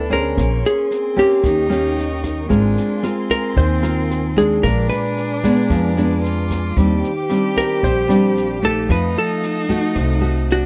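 A straight 4/4 bossa nova pulse at 113 BPM, carried by fingerpicked nylon-string guitar, woody pizzicato upright bass and a brushed drum kit with boomy kick, rim click and high-tuned snare, underpins this melancholic, wistful fragment in which a dark, clean, compressed hollow-body jazz guitar sings the melody up front, a clear bowed cello traces a vibrato second line, and a lush string section holds smooth chords in the background, moving through Bbm9, Eb7, Ab69 and Bb7b9 toward Ebmaj13 and F7b9 in a dry, close 1970s-style studio sound with light reverb.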